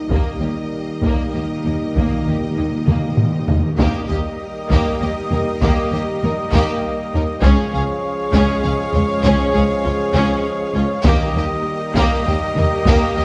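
A lush scoring-stage sound with a moderate reverb opens this majestic, triumphant excerpt of epic orchestral film music in 12/8 at 66 BPM in Eb mixolydian, where a heavy-sticked, band-limited taiko ensemble drives beneath a clear, intense violin melody with a smooth top, a clear string section, mellow French horns and very quiet trombones sustaining chords, a rich background violin second line and viola accompaniment, close cellos and distant double basses holding the bass, round soft-mallet timpani fills in the background from 0.1 s, and roomy trumpet stabs entering at 3.8 s as the harmony moves from Eb to Db and back.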